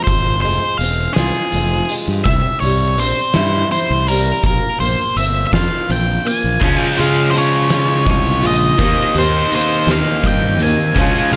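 A moderate large-studio reverb surrounds this cathartic, angsty quiet-loud alternative rock cut in 6/8 at 55 BPM, where a dark, up-front octave-fuzz lead guitar sings its melody over a boxy fingerpicked parlour acoustic's arpeggios, a growly fuzz bass and an oversized, low-tuned kit with a fat snare, boomy kick and gritty stone-room ambience, until a double-tracked overdriven electric guitar riff joins at 6.6 s as the chords move from Fm toward Db and Eb6.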